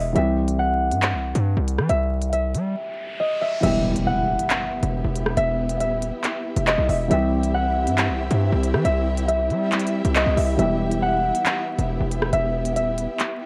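A heavy, saturated 808-style bass anchors this ominous drill cut at 138 BPM in half-time, E minor, sitting up front beside a crisp electronic drum kit of hi-hats, handclaps, rim clicks and crash. A mellow, ringing concert harp carries the melody over a dark, intimate grand piano with audible action noise, while a background riser builds through a break from 2.8 seconds into an impact as lush bowed strings enter at 3.6 seconds. The whole menacing piece is wrapped in small-room ambience, worn cassette warble, pitch drift and vinyl crackle.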